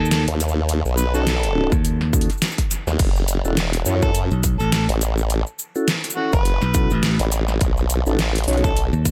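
Glitch hop at 104 BPM with a 16th-note swing, this swaggering, playful cut in F# minor pentatonic sets a gritty, overdriven harmonica melody with dub echo over a bright, growly fingered electric bass and a chorused formant-sweep wobble bass, while a dubstep kit of deep snare, metallic hats, shaker and crash, plus a punchy overdriven electronic kick arriving at 1.7 seconds, drives beneath mellow, flute-like tonewheel organ stabs that pump with the sidechain through a slow rotary speaker across B7 and F#m7 chords in a dry, echo-heavy mix.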